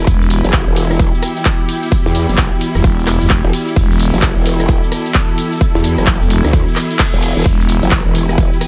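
A digital ambience frames this gritty, bouncy bass house passage at 130 BPM in E minor, swung on the sixteenths and resting on an Emadd9 chord, where a punchy, overdriven electronic kick sits up front alongside a layered big-room dance kit of crash, ride, hi-hat, handclaps, rim click and tambourine. Two growling basses drive the low end: a thick FM bass holding E1 from 0.1 to 7.8 seconds, and an aggressive, wobbling, saturated growl bass with chorus and a formant filter, both pumping with sidechain compression. Above them, a detuned, resonant sawtooth pad with chorus slowly swells and evolves, a lush, bright string ensemble adds vibrato, and a reverse cymbal rises in the background from 6.7 to 7.5 seconds.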